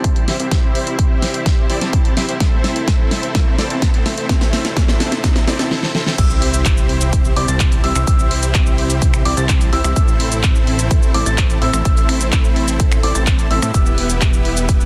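A punchy, layered electronic kick sits up front in this euphoric, anthemic festival progressive house excerpt, joined by a big-room dance kit with a huge snare, crash, hi-hat, shaker, handclaps and finger snaps, while a thick, detuned supersaw riff pumps through tape echo and a low-pass filter over a fat, sidechained analog bass and a very quiet bed of floating, bowed studio strings. A faint riser and sub drop carry the build-up, which ends in a drum fill at 5.7 seconds. The drop lands with an impact at 6.2 seconds, where a clear, intimate grand piano with audible action noise enters in the background playing high arpeggios, all within a dense, heavily limited modern master.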